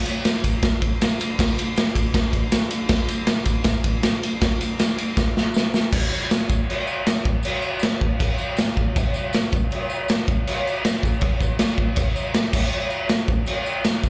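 A straight 4/4 rock beat drives this short, rowdy excerpt at 159 BPM, played on a raw garage drum kit that runs from 0.1 to 14.1 seconds with kick, snare, ride and crash. The kit sits up front with a punchy kick, a medium-tuned snare and dark cymbals, its gritty, saturated tone rolled off at the top and breathing with a pumping small-room sound. A jingly tambourine shares the same span, tucked into the background, compressed and saturated. A drum fill from 5.2 to 5.9 seconds marks the move from the opening passage into the second part, which carries on to the end. The whole thing comes across like a live club gig heard through the venue's PA, with a light reverb adding to the raw, rowdy atmosphere.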